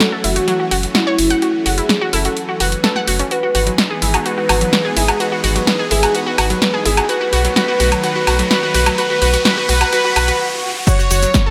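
Progressive house at 127 BPM in F# dorian, this bittersweet, expansive passage is a build-up, cut from a longer piece, over a chord cycle of F#m7, Emaj7/G# and B7 that lands back on F#m7 at 10.9 seconds. A velvety synth lead carries the melody with chorus, dub echo and a filter sweep running through the build, while a lush supersaw pad with phaser holds sustained chords beneath. An analog pluck with a warbling, detuned vintage tone plays arpeggios through chorus and digital delay, and a round, deep analog bass anchors the low end, all of them breathing with sidechain pumping. A punchy, tape-warm house kit of crash, hi-hat, snare and woodblock sits up front in studio reverb, and a background riser enters at 5.9 seconds, joined by a swell, before a stop at 10.4 seconds. At 10.9 seconds the downbeat arrives with a punchy electronic kick, a grainy cabasa and a brief biting, earthy violin section on a high C#5, all set in a moderate digital room.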